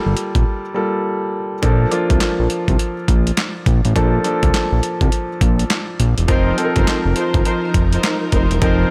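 This slick, confident new jack swing groove moves at 103 BPM in 4/4, its sixteenths pushed with a firm swing that gives the R&B pulse a strutting lilt. A gritty, sampler-style drum kit sits up front with a thumpy kick, medium-tuned snare, hi-hat and handclaps, its overdriven, compressed sound carrying the grain of a small room, and a break opens up between 0.5 and 1.6 seconds. Beneath it, a fat analog bass built from detuned sawtooth and triangle tones with wave-folding and a filter sweep holds down the low end with sustained, fast-attack notes. An intimate concert grand piano, polished and present with audible action noise and long sustain, voices the chords, moving from Gm9 to Bbmaj7. At 6.3 seconds, as the harmony shifts to F7sus4, two string sections arrive: a lush, woody ensemble playing sul tasto in the background with sustained chords, and a veiled, con sordino group adding bowed stabs with light vibrato. 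Studio ambience surrounds this short excerpt cut from a longer piece.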